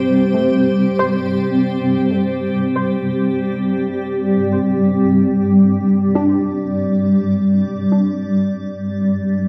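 Steeped in a long echo-chamber reverb, this weightless, luminous ambient excerpt drifts in free time, tuned to A4 = 438 Hz, as an up-front granular cloud pad holds blurred, evolving Dsus4/G chords through its own built-in reverb while a quieter, round, dark pluck spins arpeggios through ensemble chorus and analog delay until 9.1 seconds, leaving the pad alone until 9.5 seconds.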